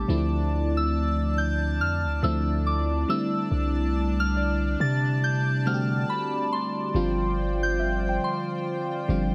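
Contemporary R&B with a smooth, romantic mood and a gentle swing, this short passage moves through Dm9, C69 and G7sus4 over a deep, sine-like 808-style bass that sits up front. A pure, chorused synth bell carries the melody high above a glassy FM electric piano treated with chorus and phaser, while a shimmering, retro pulse-width pad holds bright sustained chords. At 4.4 seconds a very quiet, round, detuned pluck adds dark texture, and light reverb with digital ambience surrounds the whole.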